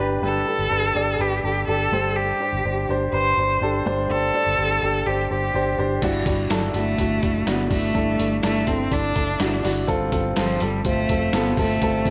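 A baby grand piano and a muted, fingered electric bass open this anthemic piano-driven pop excerpt at 124 BPM in a straight 4/4. The piano sits up front with a natural, short-sustained tone and a slapback echo, while the bass stays low, dark, round and punchy under the chords of G moving to Csus2/G. A single bowed cello enters at 0.2 s with a rich, focused, slightly boxy voice and vibrato, carrying the melody. At 6.0 s, as the harmony shifts to Dadd9 and then F, a boom bap sampler-style kit arrives with a thumpy kick, a medium-tuned snare, hi-hat and crash, pitched down, compressed and gritty with overdrive. The whole piece is bathed in concert hall reverb, giving it a big arena sound and a warm, anthemic mood.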